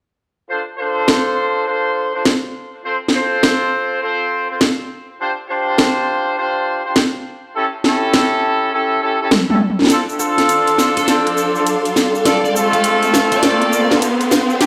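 Punchy, vintage horn stabs lead this funky, playful glitch hop excerpt from 0.5 s, run through a low-pass filter and digital delay over a swung, overdriven drum kit of cracking snare, bright hats, rim clicks and toms that enters at 1.1 s. After a drum fill, a build-up begins at 9.9 s: a clear, bowed string section with vibrato and a grainy egg shaker in the background join, an electronic riser comes in, and a dark, distorted bluesy lead guitar picks a short melody through digital delay. The mix sits in a wet studio reverb, played back over a big sound system in a bare stone room.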